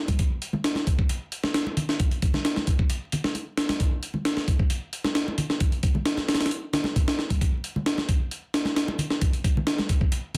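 A straight 4/4 breakbeat groove drives this short clip cut from a longer piece, swaggering and funky in mood. A sampler-style drum kit sits up front from 0.1 to 10.4 seconds, its compressed, gritty sound built on a thumpy kick, a high-tuned snare and hi-hat, re-recorded in a small room. Congas play alongside throughout at a lower level, their bright, thin-skinned, damped tone captured close and dry. A moderate small-room ambience frames the kit, while the dense, heavily limited modern master adds a layer of vinyl crackle. The whole clip stays in a single section, keeping the focus on the kit and the hand drums.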